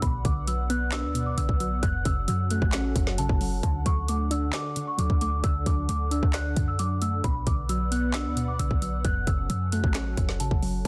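A hard-hitting trap drum kit drives this short, half-time hip hop excerpt, its hard-clipped kick, woody snare, metallic hi-hats, handclaps and crash sitting up front beside a deep, boomy, clean 808-style bass. Above them a delicate, bell-like celesta carries the melody through tape echo, while a warbling, lo-fi dusty pluck with chorus supplies accompaniment and a moody, full-bodied analog pad holds slow-blooming sustained chords. The mix is dry and densely limited, giving the Bm, F#m and D progression a mood that is both triumphant and dreamy.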